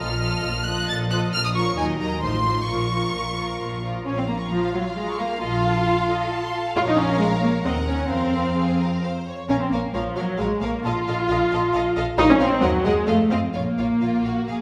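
A wet recital-hall reverb surrounds this lively, cheerful excerpt of a quick classical-period movement for string orchestra in Bb minor at 133 BPM in 3/4, where a focused, close violin section carries the melody high above a rich second violin line, an up-front, even viola section supplies the accompaniment, and a lush double bass section joins a background cello section on the bass, all bowed with vibrato through the full 14.6 seconds.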